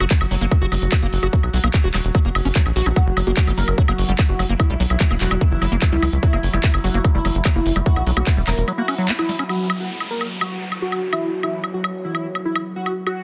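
A straight 4/4 pulse drives this psychedelic trance cut, with a tight, up-front electronic kick from 0.1 s and a layered drum kit of handclaps, woodblock and metallic hi-hats, both re-recorded in a small room. Beneath them, a punchy sequencer bass in sawtooth and square tones plays with a fast filter pluck, while a squelchy, resonant acid bass riff sits in the background with chorus, dub echo and sidechain pumping. An evolving drone of sustained chords hangs behind everything with moving overtones, chorus and its own reverb, and from 3.0 s a thick, detuned unison lead with a sub octave, vibrato, phaser and digital delay carries a dark, bold melody. A band accent lands at 9.1 s, and by 9.5 s the kick and both basses have dropped out; from there the drone's filter sweeps and an electronic downlifter descends. The mood is driving and alien, held in a dense, heavily limited modern master with a digital ambience.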